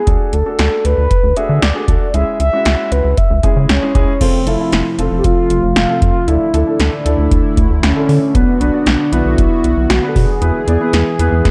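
A dry, punchy analog drum machine with a deep kick and metallic hats drives this straight 4/4 synth-pop excerpt alongside a rubbery, bouncy square-wave bass, while a round, horn-like synth lead with chorus, vibrato and analog delay carries a nostalgic, wistful melody over warm concert grand piano accompaniment, joined at 4.2 seconds by a shimmering, retro pulse-width pad, all set in light digital ambience with a dark production.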